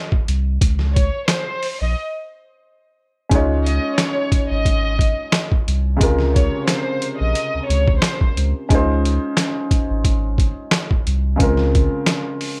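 Boom-bap hip-hop at 89 BPM in Db major with a nostalgic mood, built on a gritty, pitched-down sampler kit with a thumpy kick, handclaps and hi-hat, alongside a deep, round sub bass, while a close chamber violin section with light vibrato carries the melody from 1.0 to 8.3 s and a dark, woody upright piano with audible action noise and a cassette-tape tinge enters at 3.3 s over Db, Bbm9 and Dbmaj7 chords, all in a light reverb.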